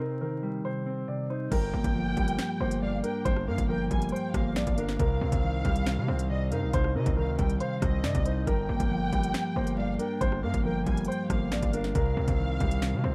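A half-time drill groove at 138 BPM in G minor kicks in at 1.5 s, with an electronic kit of knocking kick, sharp snare, crisp hats, rim clicks, finger snaps and crash under a heavy, saturated 808-style bass whose distorted tone carries a noise layer. From the start, a dark concert grand piano plays a melody through digital delay over a clean, compressed, up-front electric guitar soaked in spring reverb, moving between Cm and Gm7. A distant, lush violin section with vibrato and portamento, also treated with digital delay, joins the drums for a menacing, cold feel in this rough home-demo mix with little reverb and vinyl crackle, cut from a longer piece.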